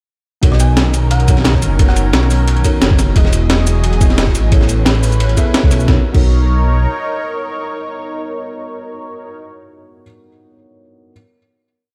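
Uplifting and dreamy, this short liquid drum and bass piece in B major runs at 176 BPM with a light swing on the sixteenths. The drop arrives at 0.4 seconds, where a thumpy, compressed electronic kick in a two-step pattern and a gritty sampler-style breakbeat kit with a high-tuned snare, cabasa, hats and crash drive the rolling groove, while a second, crunchy breakbeat loop with dark, rolled-off cymbals and edits sits in the background. Up front, a deep, rumbling detuned saw bass plays long gliding notes beneath chords moving from Bmaj9 through Emaj9 and Amaj9. A soft, felt-muted upright piano with delay plays held chords with syncopated pushes, and a lush, bright unison pad with chorus, phaser and sidechain pumping sustains the harmony, while a round, tine-like pluck adds brief warbling phrases through a diffuse ambient delay. At 5.9 seconds the beat falls away into a final Bmaj9 chord, and the mellow, intimate piano and the sustained pad carry it on in a small, lightly reverberant room, the pad fading at 9.4 seconds and the piano ringing on until 11.1 seconds.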